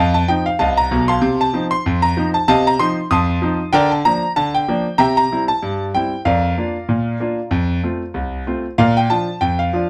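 A lightly swung two-four bounce drives this cheerful, jaunty ragtime piano solo, where a clear concert grand with deep bass and short sustain sits up front in a small, natural-sounding room, moving from an opening F7 through Bb/D and C to settle on Bb by 8.8 seconds in this brief cut from a longer piece.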